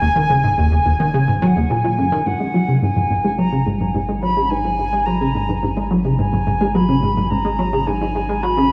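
A punchy, funky analog bass riff drives this mysterious, hypnotic slice of sequencer-driven space music in G# minor at 107 BPM, its wave-folded filter pluck thickened by ensemble chorus and tape echo over a deep, round sine sub bass. A distant wooden flute carries the melody, pure and mellow with vibrato and tongued notes trailing their own tape echo. The 8.7-second cut sits in a huge, wet reverb with a 7.3 s tail.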